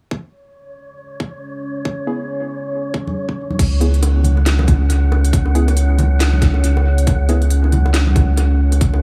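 A tight, up-front electronic kick opens this cavernous, brooding deep dubstep excerpt at 138 BPM in a swung half-time feel, soon joined by a breathy, wind-like noise texture and a dark, detuned sawtooth pad holding slow-blooming chords with chorus and reverb. Muted, filter-plucked dub chord stabs with chorus and dub echo sit in the background, and soft-handed congas and bongos with dub echo arrive at 3.1 seconds. At 3.6 seconds a thick, saturated sub bass pushes up front alongside a tape-toned garage kit of cracking snare, crisp hats and crash cymbal with analog delay, all within an echo-heavy mix.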